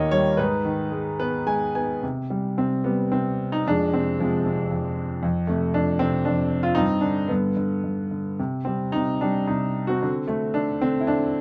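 Closely miked and detailed with a touch of light reverb, this brief excerpt of lyrical classical solo piano finds a smooth, vintage-toned grand piano up front, moving through a brooding C harmonic minor in a rubato 3/4 at 106-119 BPM, with a short fill from 0.9 to 2.0 seconds before a new section at 2.0 seconds passes through F minor, G suspended and G chords on its way to a closing D7sus2.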